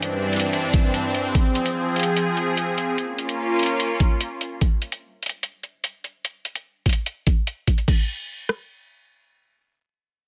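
A lush, detuned supersaw pad with phaser and sidechain pumping carries this chaotic, aggressive half-time wobble dubstep clip, its sustained chords moving from Cadd9/G through Fm to Bbm before cutting off at 4.6 seconds, over a crash-and-metallic-hi-hat kit, an overdriven knocking kick with rim clicks, and a very quiet, blurred granular cloud pad that ends at 1.3 seconds, all in light reverb.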